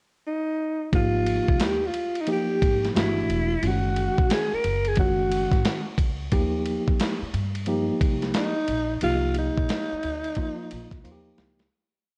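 A growling, breathy alto saxophone leads this cool, smooth jazz-hop piece with a motif-based solo melody in call phrases, full of vibrato and scooped notes, close-miked and up front with a slapback echo. From 0.9 seconds, a mellow tine electric piano adds quartal voicings and grace notes through its built-in speakers, a woody pizzicato upright bass plays a syncopated line with muted ghost notes, and a gritty, compressed sampler-style kit thumps out a boom-bap beat under a swung ride cymbal. Light reverb and a worn, warbly cassette-tape drift colour the recording, which fades out from 9.0 seconds as a drum fill closes it.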